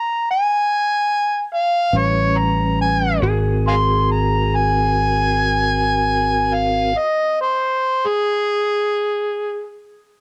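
Blues in 12/8 at a slow 46-50 BPM counted in dotted quarters, this swaggering, rollicking passage in Ab mixolydian is cut from a longer piece and sounds like a home recording on cassette with light reverb. An overdriven harmonica carries the melody from start to finish, gritty and amplified with vibrato, tongue slaps, scooped notes and a jazz-style solo voice up front, its tone colored by cassette tape. The opening is a stop-time passage with the tempo slowing, and at 1.9 seconds a round, punchy fingered electric bass and a soft, flute-like tonewheel organ through a fast rotary speaker enter under an A9 chord. At 3.2 seconds the harmony moves to Ab9 and an electric slide guitar joins in the background, slightly broken-up and compressed, played with fingerpicks. The bass, organ and slide guitar all stop at 6.9 seconds, leaving the harmonica alone to close.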